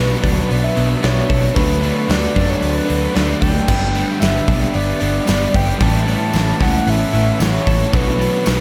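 Dreamy and blissful, this short shoegaze and dream pop excerpt floats over a Bm7, D6, G and Aadd9 progression, with a reedy, woody FM lead carrying the melody through chorus, tremolo and delay while a bright, twangy twelve-string electric guitar arpeggiates beneath it. Behind them, a dark overdriven semi-hollow guitar with reverse reverb and a thick fuzz guitar with ensemble chorus play riffs, anchored by a round, foam-muted fingered electric bass. A punchy gated 80s drum kit with bright cymbals sits up front from 0.2 seconds, a jingly tambourine joins at 4.2 seconds, and a huge ambient reverb soaks the whole mix.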